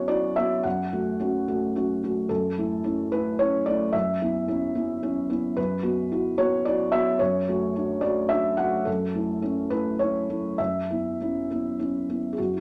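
Intimate and reflective, this short cut from a longer neoclassical minimalist piano piece moves at 109 BPM in a rubato 3/4, where a solo felt-muted upright piano, dark and mellow with thick felt and audible action noise, sits up front in a wet studio reverb, spanning F#2 to F#5 over chords that drift from F#m through A6, C#m7 and Dmaj7 above an F# bass, tuned to A4 = 441 Hz and lasting 12.6 seconds.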